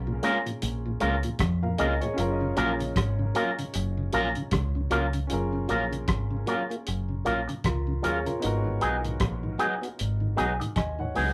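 A rough rehearsal-room recording in a wet small room carries this sweet, romantic lovers rock reggae, its sixteenths swung as the chords move from A#m7 to F#maj7 and then to G#m7 at 8.4 seconds. Up front sit a deep, round, foam-muted fingered dub bass, a cloth-damped, thuddy drum kit with a tight kick, hi-hat and rim click, and a bright, twangy electric guitar playing stabs through an envelope filter. Behind them, an intimate grand piano with audible action noise carries a dub echo, and a mellow tonewheel organ with key click turns through a slow rotary speaker, both in accompaniment.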